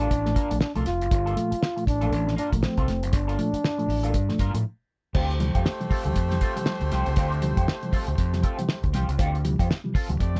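A breathy, close-miked trombone carries a dark, whispered jazz melody up front until 4.6 seconds, and a clear horn section with pop-style vibrato takes up a second line at 5.2 seconds as the harmony moves from Gm9 to Dm11. Beneath them, this driving, sly funk excerpt in D minor swings its 16ths at 119 BPM, with a punchy, overdriven fingered bass and a cloth-damped, thuddy drum kit featuring a fat snare, tight kick and dark cymbals. A twangy, slightly broken-up guitar through a small old amp adds wah accompaniment, while a mellow, reedy electric piano plays stabs with fast tremolo, all set in light reverb.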